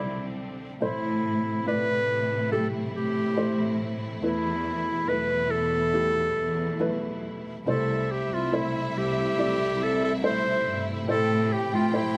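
A clear, up-front solo clarinet sings a longing, heartbroken pop ballad melody at 70 BPM over a soft, thick-felt muted upright piano, a lush bowed symphonic string section holding smooth chords, and a dark, woody chamber cello section on the bass, moving from Cadd9 through Am and Esus4 until a close, vibrato-rich violin section adds a second line at 7.7 seconds over C6, all captured dry in this fragment of a longer piece.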